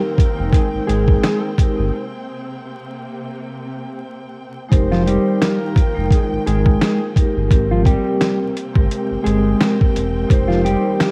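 A swung, 86 BPM boom-bap hip-hop groove in F minor, cut from a longer piece, sets gritty, pitched-down sampler drums with a thumpy kick up front against a deep sine sub bass entering at 0.4 seconds, while a ringing vibraphone with medium motor vibrato and a cassette-tape tint, bowed strings with portamento holding sustained chords, dark horn stabs with tape echo in the background, and a clean, fingered electric guitar melody bathed in spring reverb from 0.9 seconds build a reflective yet tough mood through chords moving from Fm11 to Abmaj9, all wrapped in vinyl crackle on a home cassette recording.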